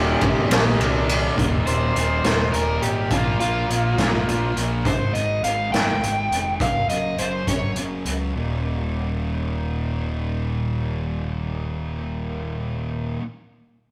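Carefree and upbeat, this indie rock passage in 6/8 is cut from a longer piece and sounds like a rough rehearsal-room take, with warm saturation and a stone-room reverb around it. An overdriven electric guitar with spring reverb carries the melody from the start and moves into a solo at 1.4 seconds, while a clear, close-miked trumpet with light vibrato sits barely audible beneath it only during those opening moments. Underneath, a bright distorted guitar riff hangs in the background until 4.8 seconds, and a thick fuzz guitar riff keeps going through the whole clip. A fingered electric bass with fuzzy overdrive sits up front, alongside a raw garage drum kit of hi-hat, ride, medium-tuned snare and boomy kick that sounds gritty and mid-forward with a rolled-off top and drops out at 8.2 seconds. The harmony moves through a chain of power chords before settling on a full major chord at the close.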